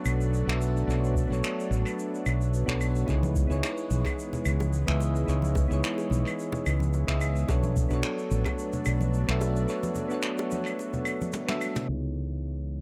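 A lightly swung 109 BPM groove in 4/4 sets up this smooth, relaxed sunset chillout passage, cut from a longer piece, where soft, rounded electric-piano-like synth keys with chorus, tremolo, tape echo and shimmer reverb drift over a lush, detuned, warbling unison pad, while an up-front, dark fretless electric bass and a brushed jazz kit with claves, finger snaps, shaker and echoed toms carry the Bm9 to C#m9 changes, joined by a deep, tape-warm electronic kick at 1.2 seconds and background bongos and congas at 3.1 seconds before a break at 9.7 seconds leads to a brief drum fill, all in an echo-heavy, low-pass-filtered mix with small-room ambience.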